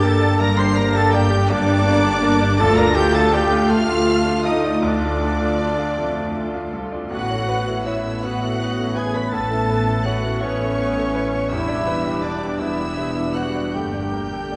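Heard from further back in a wet concert hall, this moving, bittersweet cinematic excerpt drifts in a rubato 6/8 at 54 BPM, with a lush, expressive violin section carrying the high melody above background lines from a second violin section, a clear clarinet, a pure straight-toned flute and a dark cor anglais, while a bright grand piano with audible action noise and a very quiet viola section accompany, a mellow French horn section sustains chords over smooth cello and distant double bass sections moving from Gm through Dm, Aadd9 and Em7 to Gmadd9, and barely audible hard-mallet timpani touch in at 2.6 s and 13.8 s.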